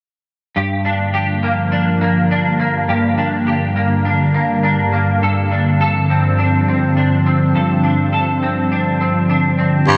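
Haunting and ethereal, this dream pop excerpt in G minor moves at 103 BPM in a straight 4/4, with a clean, compressed semi-hollow electric guitar picking arpeggios from 0.6 seconds through ensemble chorus and digital delay, joined at 1.0 seconds by an airy, detuned pad of slow-attack sustained chords with a long release, its own chorus and reverb. The harmony shifts from Gm7 to Dm7/G inside a huge ambient reverb and a dark, warm production. At 9.9 seconds a raspy, gritty baritone saxophone cuts in up front on a low G with bright vibrato, just as the excerpt ends.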